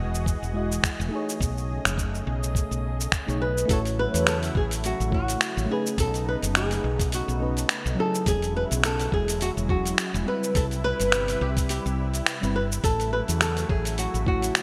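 A fingerpicked flamenco guitar carries the melody from 3.4 seconds, its acoustic tone roughened by vintage 12-bit sampler grit and trailed by digital delay. This is a smooth, warm sunset chillout cut from a longer piece, moving at 105 BPM in E major with a lightly swung 16th-note feel. A soft, dark FM electric piano accompanies from the start, with a noise layer and decaying notes coloured by chorus, phaser and delay, over a lush, detuned sawtooth pad that warbles on long sustained chords. Up front, a round, hollow-bodied fretless bass anchors the low end, while a gritty, compressed sampler-style kit of cabasa, finger snaps and hi-hat sits in gated reverb beside a thumpy electronic kick. The harmony drifts through colourful chords such as Emaj9, B13 and Cmaj7, all framed by light reverb and bright 1980s-style digital production.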